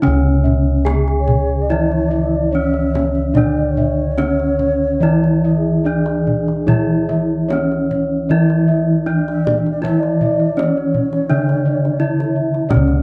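A straight 4/4 pulse at 72-88 BPM, set by a tight kendang, anchors this stately, hypnotic Javanese gamelan fragment, where up-front round, beating bossed gongs hold the bass, a bright horn-mallet bronze metallophone carries the melody with shimmering paired-tuning beats over a wooden-mallet metallophone accompaniment, a padded-mallet metallophone and softly airy bossed gongs ripple through high arpeggios in the background, and a distant, airy, mellow low xiao with vibrato enters at 1.2 s as a second line, all in a dark, dry production.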